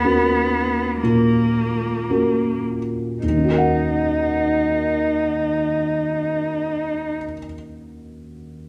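Rubato in a slow 4/4, the music eases back over its opening 3.2 seconds before a new section begins, in a melancholic, reflective neoclassical vein for piano and strings. A felt-muted upright piano carries the accompaniment, its tone soft, boxy and dark, with thick felt and audible action noise placing it intimately up front. A single bowed cello sings a focused second line with vibrato and a smooth top until 7.2 seconds, leaving the piano alone to 8.7 seconds, all within a moderate scoring-stage reverb in this fragment of a longer piece.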